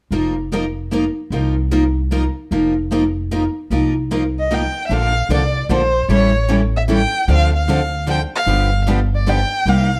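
A swung waltz lilt carries this charming jazz manouche excerpt, where two bright picked steel-string acoustic guitars, one with fresh strings and one further back with audible finger squeak, supply accompaniment over a woody, thumpy pizzicato upright bass on gut strings, and a single up-front violin joins them at 4.4 s with expressive vibrato, portamento and plate reverb, all set in a dark, moderately reverberant studio sound.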